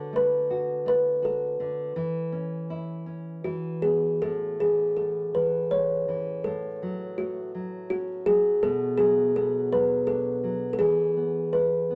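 A kalimba and a nylon-string guitar begin together, the kalimba carrying a gentle, tender lullaby melody in a lilting three-beat metre while the guitar accompanies beneath it. The kalimba sits up front with a woody, ringing, mid-forward tone, its fingertip plucks soft and mellow. The guitar is set much lower in level, giving a dark, full-bodied classical foundation with a fingerpicked touch and some finger squeak. The time flows freely in a rubato feel, and a new section arrives at 4.2 seconds, with the harmony moving through chords such as F#m/A and Bm before settling on E. A wet club ambience surrounds the pair, lending the children's piece, cut from a longer recording, an intimate sense of space.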